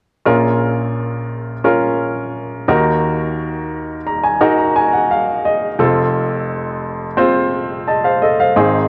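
A clear baby grand piano opens this brief pop excerpt at 0.3 s, setting an earnest, dramatic mood in a steady, straight 4/4. The piano plays an accompaniment part from deep in the bass up into its upper register, its polished, short-sustained tone sitting up front in the mix. From 3.7 s to 5.8 s the piano breaks into a fill, and the harmony moves from B-flat minor to E-flat minor and then to F. A moderate plate reverb gives the sound a sense of space, while a worn cassette-tape character adds a warbling pitch drift to the otherwise present piano. The clip ends at 8.9 s, cut from a longer piece.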